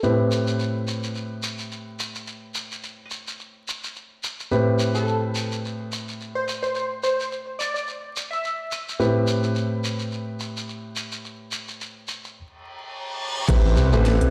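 A warm, up-front concert grand piano drives this swaggering, playful glitch hop excerpt at 107 BPM in A minor with swung 16ths, its pumping, filtered, delayed stabs riding over a grainy shekere and a background kit of cracking snare and metallic hats, while a punchy, catchy detuned unison lead with chorus and delay enters at 4.9 seconds, and a reverse cymbal at 12.6 seconds ushers in a knocking kick and a swirling, saturated phased saw bass at 13.5 seconds, all set in a large, reverberant room with vinyl crackle.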